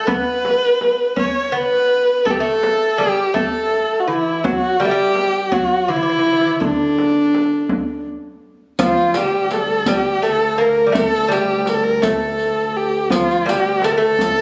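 Persian modal ensemble music in a slow, melancholic and soulful 6/8 at 55 BPM, cut from a longer piece and moving from dastgah mahur into dastgah shur on D at 8.8 s. A warm, up-front kamancheh carries the expressive bowed melody with vibrato and portamento, over a bright, delicate fingerpicked gut-string lute line and a deep tombak. At 8.8 s a clear, boxy bowed double bass drone and a riq with bright jingles join, all heard through a moderate hall reverb in a phone recording made in the room.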